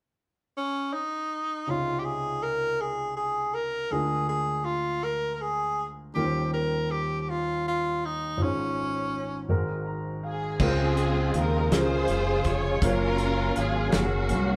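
An edgy, forceful tenor saxophone carries the melody from 0.6 seconds, its jazz-style solo voice punchy and up front with vibrato, in this reverent, uplifting slow gospel piece in 6/8 cut from a longer performance. Beneath it, a concert grand piano with deep bass and long sustain accompanies through rich extended chords, then steps forward with a fill at 9.5 seconds as the saxophone drops out. At 10.3 seconds a lush, bowed string section takes up the melody with portamento and expressive vibrato, and at 10.6 seconds the rest of the band arrives: a fat, lightly overdriven tonewheel organ holds sustained chords with key click, percussive attack, chorus vibrato and a slow rotary speaker. A fingered electric bass sits direct and up front, and a soul drum kit with dark cymbals, a medium-tuned snare and a tight kick adds a rolled-off, small-room feel. The band sounds as if it is playing live in one room, with a wet studio reverb giving the warm ensemble a gentle glow.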